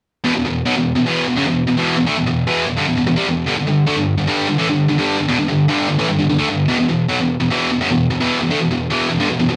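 A high-gain electric guitar plays alone and up front, its bright, distorted tone doubled into a thick, double-tracked wall of picked sound. This heavy, aggressive metal fragment moves in a straight 4/4 feel, with the guitar sitting low in its register between E2 and A3. The harmony rests on an E5 power chord, shifts to G5 at 3.5 seconds, and returns to E5 at 6.7 seconds before the clip ends at 9.6 seconds. A light reverb gives the sense of a band captured live in one room.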